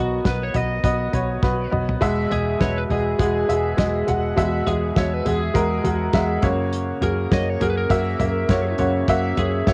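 An uplifting, piano-driven pop excerpt at 102 BPM with a light sixteenth-note swing opens on a bright, woody upright piano, slightly detuned and with audible action noise, playing B, Eadd9 and F# chords with the cassette-tape lead guitar carrying a twangy, slightly broken-up melody and a round, foam-muted electric bass below, while a dry, damped 70s drum kit with a fat snare enters at 0.3 seconds and plays a fill at 1.4 seconds, all in a small, homely room.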